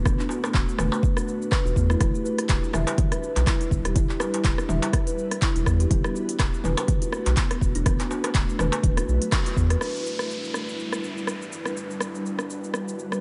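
Lightly reverberant digital ambience with a soft top end frames this earthy afro house excerpt in E minor at 123 BPM with a swung sixteenth feel, where a woody kalimba with tape echo spins arpeggios over an airy, chorused pad and a round, deep analog bass, all three pumping to the sidechain, while a deep, up-front electronic kick, a deep house kit of smooth hats, cabasa, handclaps, rim clicks and toms, and a crisp metal-shelled darbuka drive the groove until a band accent at 9.3 s gives way at 9.8 s to the pad, kit and an electronic downlifter alone through 13.2 s.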